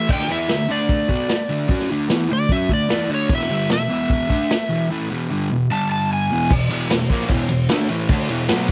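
An overdriven, fingered slide guitar carries the melody in this raw, rowdy garage rock piece at 150 BPM in a straight 4/4, playing until 6.5 seconds. Beneath it, an up-front fuzz guitar, double-tracked and compressed, grinds out a picked riff, while a vintage acoustic kit with a punchy kick, medium-tuned snare and rolled-off top drives along with crash, ride and hi-hat. The dry home cassette recording gives the music a rough, homespun grit.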